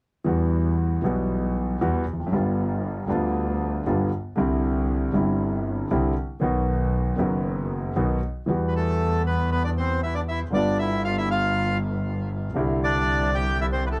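Melancholic and passionate, this tango passage, cut from a longer piece, moves with a rubato feel as a warm, intimate concert grand piano opens the accompaniment at 0.2 seconds, its deep bass and audible action noise sitting up front. A single bowed double bass joins at 0.3 seconds with a clear, focused tone and vibrato, while a reedy, airy bandoneon enters up front with the melody at 8.7 seconds, carried by tape echo. The dry, close recording has a 1970s studio character, cycling through chords such as Emadd9, G7 and Cadd9.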